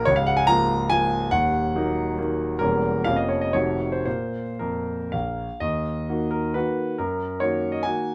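A clear, up-front concert grand piano plays alone through this wistful, capricious romantic dance in triple time, its dotted rhythms pulled about with rubato, its deep bass reaching down to Db1 under light reverb, and the brief fragment shifting to a new section at 5.6 seconds before it breaks off at 8.1 seconds.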